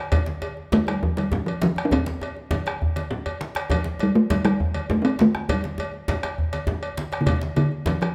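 Captured with close, detailed microphones in a moderate recital-hall reverb, this festive, earthy West African drum-ensemble excerpt rolls along in 12/8 at 134 BPM, with a round bombo, a tight, cracking djembe, bright thin-skinned congas and a metallic cowbell sounding together from the start, before an up-front, short-ringing talking drum enters at 0.7 s to carry the melody between C3 and D4, and a drum fill breaks through at 3.1 s.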